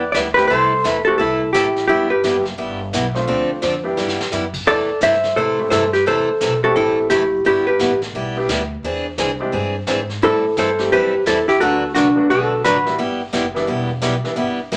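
A dark, clean, compressed hollow-body jazz guitar carries the melody in three phrases through this cheerful, playful western swing country tune at 173 BPM in G major, over a bright, full-bodied picked dreadnought acoustic guitar with audible finger squeak, a clear, polished upright piano, a woody, growly pizzicato upright bass and a vintage brush kit with dark cymbals and a punchy kick that plays a short fill at 4.0 seconds, set in a moderate club reverb.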